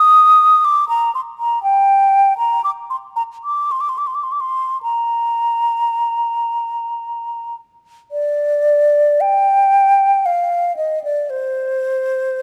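A pure, hollow concert flute plays alone and up front, its vibrato and soft attack set in a moderate concert hall reverb and caught by close, detailed microphones. This fragment of a baroque-style classical fantasia in Bb major moves at 56 BPM in a dance-like 3/4, with uneven beats and free rubato giving it a serene, unhurried lilt. The line ranges from C5 to Eb6, and a new section begins at 8.1 seconds before the fragment ends at 12.4 seconds.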